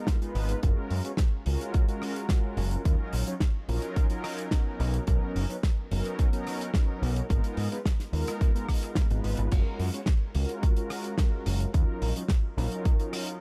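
A straight 4/4 groove at 108 BPM drives this short nu-disco fragment, with a punchy, layered electronic kick sitting up front from 0.1 seconds. Alongside it, a damped 70s acoustic kit adds hi-hat, rim click, crash and a medium-tuned snare, its sound dry with dark cymbals and touched by analog delay. A growling picked electric bass, overdriven and direct, enters at 0.3 seconds and holds a prominent, up-front place in the low end. Above, a mellow synth brass part carries the harmony from the very start: a round, detuned sawtooth tone with a fast attack, sustained notes, vibrato, chorus and analog delay. The chords cycle through G#m69, F#maj9, D#m9 and Bmaj9 in G# dorian, giving the piece a groovy, cosmic mood. A small room ambience and an echo-heavy mix surround the parts, and the fragment is cut from a longer piece.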